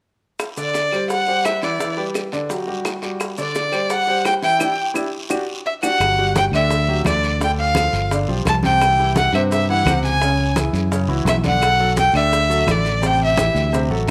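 A moderate echo-chamber reverb gives this festive, joyful salsa excerpt a roomy sheen, with a clear, focused solo violin bowing with vibrato up front over a present grand piano, while tight, high-tuned bongos, woody claves, a raspy guiro and grainy maracas sit in the background. After a band accent from 4.6 seconds and a drum fill from 5.1 seconds, the second section opens at 6.0 seconds as a dark, round fingered electric bass enters up front alongside ringing congas struck with hard hands.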